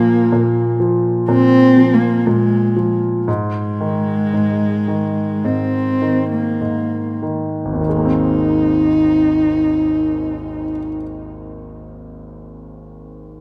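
A dark, woody bowed cello carries a tender, hopeful pop melody with vibrato and sul tasto over a clear concert grand piano with deep bass, long sustain and audible action noise, both up front at 47-63 BPM in Ab major as the tempo slows through the first 7.9 seconds, the cello stopping at 10.8 seconds and the piano at 13.4 seconds in a rough home demo mix with moderate plate reverb.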